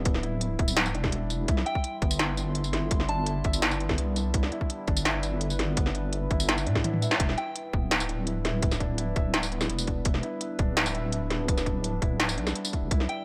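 Half-time drum and bass with a heavy, dark mood, where a hard-clipped electronic kick and an up-front industrial kit with a clanging snare and smooth hats play alongside a deep, wobbling bass, while a felt-muted upright piano with 12-bit sampler grit and dub echo plays arpeggios over a moody analog pad that pumps in the background, and a pure FM synth bell chimes briefly from 1.7 seconds before a drum fill and band accent near 7.1 seconds.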